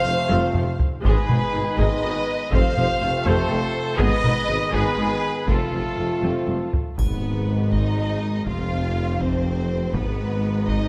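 Close, hard-stick taiko drums drive this heroic, epic orchestral film-score excerpt in 6/8 at 81 BPM, with tight, present trumpet stabs and bright trombone chords that stop at 6.7 s, while lush bowed violins carry the vibrato-rich melody and a smooth second line over warm sustained French horns, very quiet distant violas, a mellow roomy tuba, double basses and cellos on the bass, moving between F and Ab minor in a moderate scoring-stage reverb until a huge impact and a dark, very quiet triangle arrive at 7.0 s.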